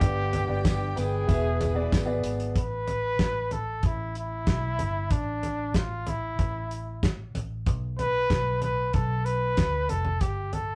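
This piano-driven pop fragment, cut from a longer piece, moves at 94 BPM in a straight 4/4 with a driving, earnest mood. A breathy trumpet carries the melody throughout, its soft attack, light vibrato and whispered, intimate tone sitting up front. For the first 2.6 seconds, a smooth vintage grand piano and a very quiet, lush bowed string section with a woody tone fill out the opening over G and E chords, joined by a faint jingly tambourine that drops out just before them. After that, only the trumpet, a dark, round, foam-muted electric bass and a dry, damped 70s drum kit with a fat snare and tight kick continue through A5 and D5/A harmonies, a chordless stretch, and a final G5. The sound has the rough feel of a rehearsal room, with moderate reverb.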